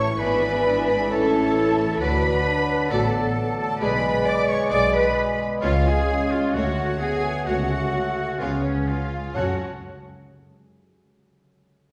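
Dramatic and restless, this fast romantic orchestral passage in F# minor moves at 131 BPM, with a lush, vibrato-rich violin section carrying the melody from the background while a clear oboe, a very quiet clarinet, a mellow flute section and a second, softer-edged violin section weave supporting lines around it. Beneath them, a very quiet viola section adds portamento, a bassoon and a punchy French horn section hold the accompaniment and sustained chords, a concert harp rings out arpeggios, and smooth, even cello and double bass sections anchor the low end. The whole ensemble sits back in a reverberant scoring stage, and a close, dry timpani stroke with hard mallets arrives only at 9.4 s as the harmony settles on F# minor.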